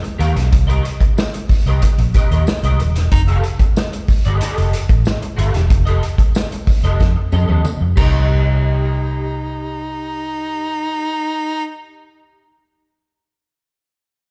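Heard as a live gig through the venue's PA, with a recital-hall ambience, this fragment of a longer funk piece sits at 93 BPM in a straight 4/4, in C dorian, with a sly, hypnotic mood. A dark, round, foam-muted vintage electric bass sits up front and carries the low end, alongside a punchy vintage acoustic drum kit with dark cymbals, a medium-tuned snare and a pumping small-room sound that drops out at 8.1 seconds, during a fill that begins at 7.0 seconds. A jingly tambourine stays in the background, while a bright, twangy, slightly broken-up electric guitar, picked through a small old amp with a lo-fi edge, ensemble chorus and slapback echo, supplies accompaniment from start to finish. A clear, vibrato-rich baritone saxophone in a pop style adds a brief touch at 3.1 seconds, then returns up front from 8.0 seconds on Eb4 with its own slapback echo. The harmony moves from Cm7 to F9 and back to Cm7 as the groove shifts into a sparer closing passage.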